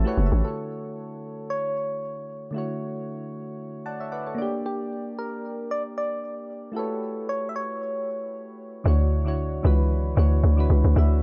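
Amapiano at 114 BPM in D major, this short cut from a longer piece has a soulful, warm mood and a 16th-note swing. Soft, round synth keys with a mellow, electric-piano-like tone and a touch of chorus carry the harmony throughout, adding fills at the very start and again between 3.6 and 4.6 seconds. A gentle, keys-like struck synth lead sits up front from 0.4 to 8.6 seconds, its chorus, vibrato and tape echo shading a melody over Dmaj9, Gm and A13. The hollow log drum bass, percussive and bouncy with a noisy edge, is heard briefly at the opening and then returns prominently at 8.9 seconds for the drop, as the chords settle back on Dmaj9. The production is dark and warm, with little reverb.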